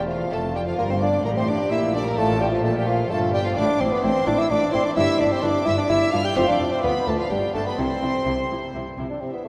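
Lively and festive, this brief excerpt from a baroque-style concerto movement with solo episodes moves at 129 BPM in a straight 3/4, starting in F major and shifting to C major from 3.6 s. A dark, up-front bassoon carries the solo melody with light vibrato in a classical style, while a rich violin section with a gut-string, period-style tone plays a high melodic line above it and a second violin section sits in the background on a supporting line. A distant, dusky viola section and a very quiet, delicate fingerpicked lute with double gut strings fill in the accompaniment. Underneath, a close, nasal cello section and a smooth-topped double bass section form the bowed bass, with the double bass stopping at 9.1 s. The harmony moves from D minor through G minor seventh and A minor toward a closing turn onto C, and a long, wet church reverb of 3.4 seconds surrounds the ensemble.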